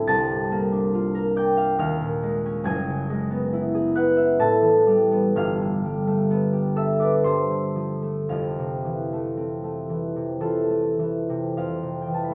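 A solo concert harp, ringing and thumb-plucked, sits up front in light reverb for this peaceful, dreamy classical fragment, flowing in an unhurried rubato triple metre through rich extended chords from C11 to a closing Fmaj7 at 8.3 seconds before the clip cuts off.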